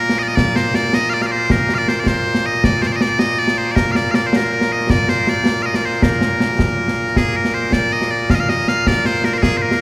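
In a straight 6/8 at 106 BPM counted in dotted quarters, this short cut from a longer piece of Scottish traditional pipe music in Bb major has a proud, stirring character. Loud, piercing bagpipes carry the continuous solo melody up front from the start, ranging from Bb2 to F5, while close acoustic concert snare and bass drum with dark cymbals join at 0.1 seconds. The whole performance sits in a cathedral reverb with a long 4.4-second decay, and the tune moves into a new section at 7.2 seconds before it is cut off.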